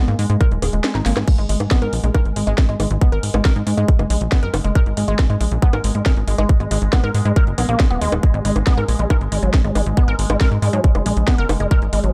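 Psychedelic trance in G# minor at 138 BPM, this excerpt from a longer piece feels alien and driving, set in a dark production with little reverb. A tight, up-front electronic kick anchors the groove from 0.4 s, briefly dropping out between 0.8 and 1.3 s while a drum fill from a layered electronic kit of bongos, crash cymbal, hi-hat and a cracking snare fills the gap. Beneath it, a punchy, funky analog bass with a fast attack and decaying filter pluck holds the low end up front. The riff comes from a woody, wave-folded pluck with a noise layer and ring modulation, its short, percussive notes treated with chorus, digital delay and sidechain pumping. In the background, a pulsing, tempo-synced gated texture sustains chords on G#3 with a slow attack and long release, softened by chorus and its own reverb and shaped by sidechain pumping.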